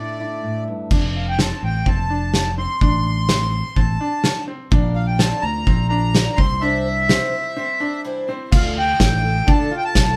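A reedy accordion carries the melody near the front of this yearning, wistful indie folk excerpt in a straight four, its slow beating giving the line a gentle waver. It opens over a fingerpicked steel-string acoustic guitar with an auditorium body, which stops at 1.9 seconds, shortly after the rest of the band comes in at 0.9 seconds. A loose acoustic drum kit sits forward with a punchy kick, a medium-tuned snare, dark cymbals and a rolled-off top in a pumping studio room, while a round fingered electric bass, direct and amped, underpins it. A bright upright piano adds brilliant, woody arpeggios with short sustain, and from 4.7 seconds a boxy picked twelve-string acoustic guitar joins with a shimmering, octave-doubled sound and the odd finger squeak. The arrangement builds toward a brief break before moving into a new section, captured as a band playing live in one room with light reverb.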